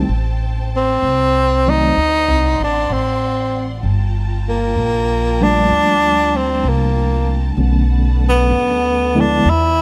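A light reverb wraps this tender, late-night jazz ballad excerpt at 64 BPM in a swung 4/4, where a breathy, whispered tenor saxophone carries the melody up front from 0.8 s over a worn, slightly out-of-tune tine electric piano with medium tremolo through a combo amp, a lush bowed string section holding sustained chords beneath, and a woody pizzicato upright bass, moving through Am7b5, D7, Gm9 and Bm7.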